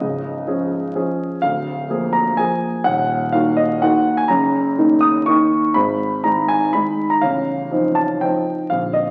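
In an uneven, rubato 3/4 lilt at 124 BPM, this elegant, graceful classical piano waltz in E-flat minor, cut from a longer piece, features a solo concert grand with a clear, worn, up-front tone and deep bass ringing through a wet recital hall, all heard through the crackle of a very old 78 rpm record.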